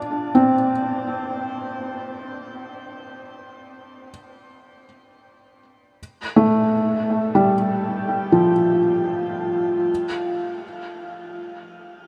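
This ambient fragment, cut from a longer piece, drifts in free time with a serene, melancholic mood, tuned slightly low to A4 = 439 Hz. A felt-muted upright piano plays alone throughout, moving within a narrow span from F3 to D4. Its tone is soft and intimate, with short sustain and audible action noise, and the piano sits up front while a tape echo trails each note. A wet shimmer reverb with a long 8.3-second decay surrounds the piano. The harmony opens on a rootless Bb, moves to F as a new section begins at 6.0 seconds, and falls away into unharmonized notes from 9.9 seconds.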